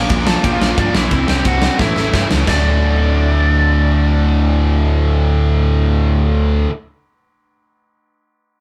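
Punk rock at 177 BPM in a straight 4/4, energetic and upbeat, cut from a longer piece: a growly, punchy overdriven picked bass sits up front with a big-room acoustic drum kit of china, ride, kick and snare that plays until 2.6 seconds after a fill from 1.8 seconds, while an overdriven rhythm guitar and two tight distorted guitars, one double-tracked, play picked riffs in the background over a chord move from Bb through C and A to Dsus2, and a biting lead guitar carries the melody from 0.3 to 6.0 seconds, all caught as a band playing live in one room with light reverb.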